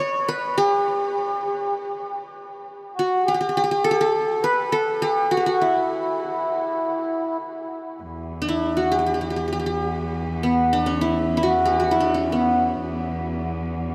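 A bright, plectrum-plucked qanun and a reedy, vintage-toned accordion open this festive Arabic excerpt together, moving at 100 BPM in a straight 4/4 feel in maqam rast on E, tuned slightly below standard pitch. The qanun carries the melody up front, its triple strings giving a bright-edged shimmer that an analog delay trails behind. The mellow accordion supplies a quieter second line with a slow beating quality and a band-limited, tone-chamber color, dropping away at 7.4 seconds. From 8.0 seconds a distant bowed cello settles in beneath the qanun, holding a smooth, even drone on a low E with gentle vibrato from a single player. A huge ambient reverb with a long decay soaks the mix, giving the short passage a dreamy atmosphere.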